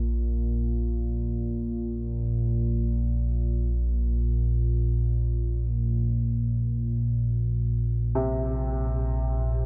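Dark ambient drone in free time, this brief cut from a longer piece carries a dark, ominous mood over a Bbsus2 harmony. An analog drone sits up front from the start, spanning Bb1 to Bb2 with a detuned sawtooth and pulse-wave tone whose pulse-width modulation keeps it slowly evolving, its slow attack, long release and subtle chorus giving it a sustained, shifting body. At 8.2 seconds a warm baby grand piano enters up front with arpeggios around C3, sitting lower in level than the drone. Both parts run to 9.7 seconds. A huge ambient reverb with a 7.3-second decay surrounds the sound, and the production leans dark and warm, tuned slightly below standard pitch at A4 = 439 Hz.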